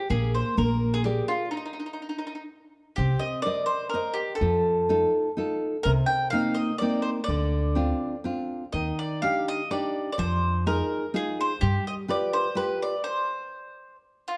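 An Italian folk serenade in 3/4, lively and romantic, this excerpt sets a woody, double-strung mandolin melody up front over fingerpicked nylon-string guitar, with audible finger squeak, and a thumpy pizzicato upright bass. After a brief opening phrase, the band breaks off at 1.5 seconds before a longer section moves through a chain of seventh chords. The bass drops out at 11.8 seconds and the guitar at 12.9 seconds, leaving the mandolin alone to the end, all captured with close, detailed microphones in a moderate recital-hall reverb.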